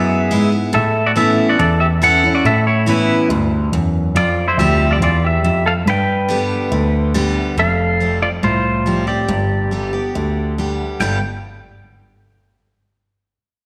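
Heartfelt and down-home, this excerpt of honky-tonk and classic country moves at 140 BPM in a straight 4/4. A clean, electric pedal steel guitar carries the melody up front, its slide tone compressed and shaped by volume swells, played with fingerpicks between E4 and G5. Beside it, a bright, full-bodied dreadnought acoustic guitar picks out the accompaniment, also sitting up front. A dark concert grand piano supplies the bass, mellow and somewhat boxy in its low register from F1 to A2. All three parts play from 0.0 to 11.2 seconds, set in a moderate recital hall reverb, as the harmony moves from E through Aadd9, Fsus2 and G, then shifts to Fadd9 at 7.6 seconds and back to G at 9.3 seconds.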